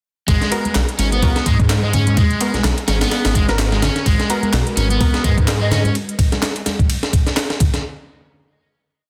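Breakbeat at 127 BPM in G# minor, a funky, gritty drop built on an up-front, compressed sampler break with a thumpy kick and high-tuned snare, layered with a background machine kit of metallic hats and claps and a loop of bright, close congas. A swirling, thick detuned saw bass with phaser drives a skipping syncopated line beneath a crunchy overdriven guitar riff repeating a 16-step sequence through tube saturation and delay, while punchy orchestra-hit-like synth stabs echo sparsely in the background. A warbling lo-fi pad with sidechain pumping enters at 4.5 seconds, and a distant silver flute with an AM radio tone offers a brief phrase at 5.6 seconds, before the congas carry on to 7.7 seconds and the drums to 7.8 seconds.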